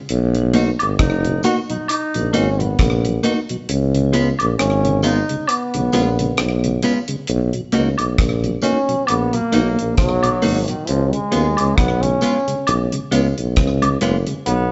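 Swung sixteenths set a warm, laid-back roots reggae groove, where a punchy, close-miked tuba bass and a dry, deep drum kit of hi-hat, rim click and tight kick with slapback echo anchor a clean, compressed electric guitar with warbly pitch drift, a mellow, dark tonewheel organ turning through a slow rotary speaker in the background, and vintage tambourine and woodblock, while a distant, roomy trombone carries the melody, the kick dropping out from 3.7 to 7.3 seconds before the trombone takes a solo at 7.3 seconds, the band playing live together in a stone room with a dulled top end.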